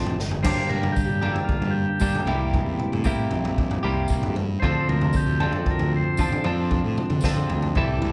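A bright, compressed twelve-string electric guitar plays a clean picked riff in this short, hypnotic psychedelic rock cut, over a round, overdriven fuzz bass and an up-front vintage drum kit with a tight kick and rolled-off top, which opens with a fill at 0.2 seconds. A buzzy combo organ carries the melody from 0.4 to 6.4 seconds while a jingly tambourine sits low in the mix, as the chords move through Gm, C7, Dm7 and F6. The band sounds as if it is playing live together in one large studio room with moderate reverb, giving the music a dark, natural feel.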